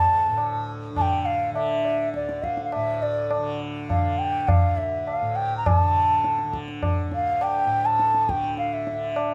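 Hindustani classical music in a straight 5/4, this brief fragment of a longer performance carries a longing, introspective mood. A breathy, mellow bamboo bansuri sits up front with a soft attack and straight tone, carrying the melody over a bright, buzzing tanpura drone that shimmers quietly beneath. High-tuned, ringing tabla enters at 0.4 seconds, close and acoustic, while the ensemble plays live together in one room within a moderately reverberant large studio space.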